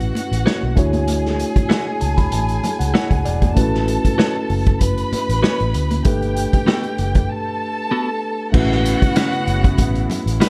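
Romantic and warm, this cut from a lush 1970s-style soul piece moves at 96 BPM in A major with a gentle sixteenth-note swing, built on a punchy, up-front vintage drum kit with dark cymbals, a round foam-muted fingered bass, very quiet high-tuned congas, and a clean tine electric piano that plays a fill at 1.7 seconds. A compressed, picked electric guitar carries the riff while an expressive chamber violin section sings a second line with vibrato and portamento over lavish sixth-ninth and major-ninth chords. After a break at 7.3 seconds, a reedy studio string section with a gut-string tone enters in the background at 8.5 seconds with sustained chords, all in a small, dark room sound.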